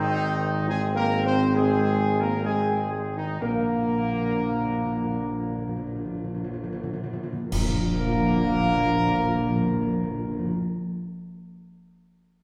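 A regal, majestic classical fanfare excerpt in 4/4 at 53-72 BPM opens with a distant, punchy trumpet section carrying the melody over sustained chords from smooth-topped French horns and clear, lightly vibrato trombones, anchored by a dark, up-front tuba bass. The music slows as the harmony moves from Ab to Bb, where hard-mallet timpani enter at 3.4 s with an articulate fill, and bright clash cymbals with concert bass drum join a full band accent at 7.5 s, all within a reverberant recital hall.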